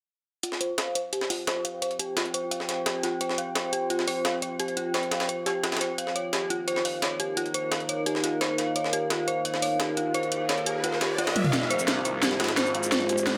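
Dark and mechanical, this short cut from a longer piece of technical drum and bass opens at 0.4 seconds with an eerie, inharmonic synth bell playing arpeggios up front, its chorused, tremolo-shaded tone passing through a low-pass filter sweep and digital delay. Two drum kits start together: a layered electronic kit with a cracking snare, hi-hat, shaker and toms, and a gritty, pitched-up sampler-style breakbeat kit whose compressed, tape-toned hats and snare are thinned by high-pass filtering. From 1.7 seconds a deep, moody pad holds sustained chords with a slow attack, chorus and its own reverb underneath. A riser murmurs in the background from 10.0 seconds, and a drum fill leads into a build-up at 11.5 seconds where a snarling, growling saw bass arrives, distorted and overdriven with a moving notch. A moderate, lush hall reverb surrounds the mix.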